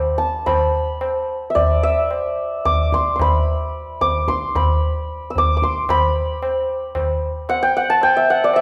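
Hindustani classical music in a serene, meditative mood, this short passage cut from a longer piece moves at 111 BPM in 5/4 with a straight feel, gradually speeding up throughout. The santur carries the melody from the very start, its mellow, shimmering hammered tone ringing up front across a range from D5 to E6. The tabla joins at 0.2 seconds, high-tuned with a short ring, its compressed, saturated sound also placed up front. Around 5.9 seconds the music moves into a new section that runs to the end at 8.6 seconds. A wet recital hall reverb surrounds the pair, giving the sense of a church or concert hall.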